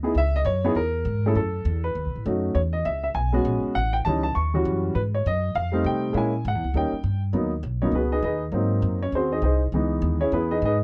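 Swinging at 201 BPM in 4/4, this cool, moody jazz piano trio fragment in G# minor pairs a natural-toned baby grand piano carrying the melody with a woody, pizzicato upright bass on steel strings, both up front in a dry, close 1970s-style studio sound, moving through chords such as C#m, A7#11 and D#7 before the piano takes a solo over G#m7 to C#m9 from 7.3 s.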